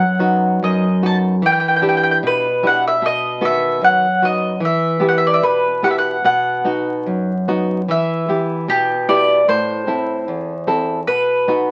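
Vinyl crackle from a very old 78 rpm record sits over this short fado passage, with a moderate studio reverb giving the instruments a modest room around them. The mood is passionate and mournful, in E minor at 75 BPM in 2/4, though the rubato feel lets the pulse stretch and breathe. A picked mandolin carries the melody up front from G4 to A5, its double strings lending a woody, warm character. Beneath it, a small-sounding nylon-string guitar fingerpicks the accompaniment from E2 to A4, also up front and warm. The harmony circles between B and E minor, touching Em7 at 1.4 seconds and A minor at 9.5 seconds before coming back to B. Both parts play together through the full 11.7 seconds of this fragment cut from a longer piece.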